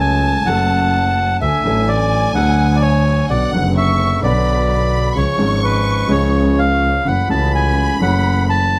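A reedy, dark bandoneon carries the melody from the first moment of this nostalgic, passionate tango fragment in F# minor at 127 BPM with a rubato feel, joined throughout its 8.8 seconds by a focused, distant violin section with vibrato on a high second line, a warm, intimate concert grand with audible action noise and deep bass, and an up-front double bass from a single player, bowed airily sul tasto with light vibrato, all captured close and dry as the harmony moves from F#m through D, Bm and C# to F#m7.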